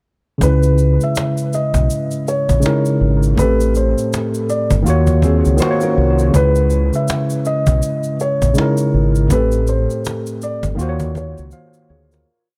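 Nostalgic and hazy, this short lo-fi hip hop piece sits at 81 BPM with a swung sixteenth feel, built on a worn, slightly out-of-tune tine electric piano pushing spread chords through cassette tape and dub echo, while a felt-muted upright piano with audible action noise carries a short looping melody. A round, punchy fingered electric bass plays a sparse line with chromatic approach notes under a woody cajon's slumped, off-grid beat and grainy, bright tube shaker sixteenths. A dark, thumb-plucked nylon-string guitar adds fills in sixths in the background from 5.2 to 6.3 seconds, and the echo-heavy small-room mix fades out from 9.3 seconds, with a closing drum fill arriving at 11.5 seconds.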